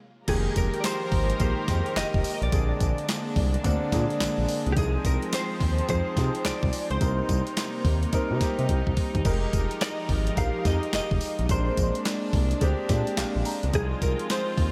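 Punchy and slick, this new jack swing R&B cut rides a mid-tempo shuffle with a pronounced swing on the sixteenths, moving through lush extended chords like Fm11 and Bb9. A clean 12-bit drum machine sits up front with a thumpy kick, medium-tuned snare, handclaps, hi-hat, tambourine and crash, its sampler-style hits carrying a tape warmth from being re-recorded in a small room, and a short drum fill arrives at 8.7 seconds. Underneath, a smooth gliding synth bass blends sawtooth and triangle tones with wave-folding, sliding between notes with portamento and a gentle vibrato. A vintage concert grand supplies intimate accompaniment with deep bass and audible action noise, softened by a lush chorus, and takes a brief fill at 12.9 seconds. A studio string section holds floating, pure sul tasto chords, while a direct-recorded clean electric guitar plays the picked, compressed melody through ensemble chorus and analog delay, all set in light digital ambience.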